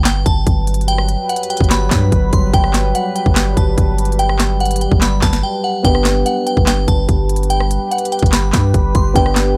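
A trap drum kit with a hard-clipped kick, sharp snare, crisp hats, claps and rim clicks opens this half-time hip hop excerpt at 145 BPM in G major, alongside a deep, mellow sine 808 bass sitting up front. A glassy, crystalline FM bell carries the melody through chorus and phaser over a moody, detuned sawtooth pad with slow attack and built-in reverb, holding a Gmaj7 in a mood both triumphant and wistful. After a brief break at 5.4 seconds, an intimate vintage grand piano with audible action noise enters at 5.8 seconds on a G chord, all captured in a dry, gritty recording with transformer saturation.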